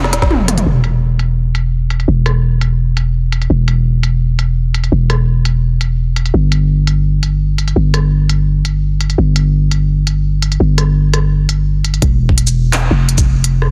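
Dry and dense, this short cut from a longer half-time drum and bass track has a heavily limited modern sheen and a tense, cinematic mood. It moves at 169 BPM in 4/4 with a half-time feel, set in E phrygian. A growling, buzzy 808-style bass sits up front throughout, its sine tone hitting with a fast attack and then decaying in the low register. The organic electronic kit opens with a fill and carries the whole passage with a woody, softly clipped snare, crisp filtered hats, handclaps, rim clicks, shaker and toms, all re-recorded in a small room. A gritty, thumpy overdriven kick punches in briefly at 0.2 seconds, then returns for the drop at 12.0 seconds, which runs to the end at 13.7 seconds.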